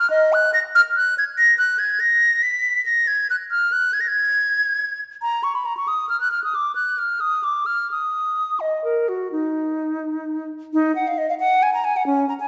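A resonant recital hall with a reverb tail of about 1.5 seconds surrounds a close, up-front concert flute, giving this short classical passage a church-like grandeur. The piece is a baroque-style fantasia for unaccompanied flute in Eb minor, tuned to A4 = 441 Hz, and its mood is solemn and grave. It moves in a rubato 12/8 at roughly 82-96 BPM counted in dotted quarters, so the pulse breathes freely rather than marching. The solo flute has a hollow, airy tone with a crisp attack and vibrato, and it spans from Db4 up to Cb7 across the 12.5 seconds. A new section begins at 10.7 seconds, and the recording stops partway through a longer piece.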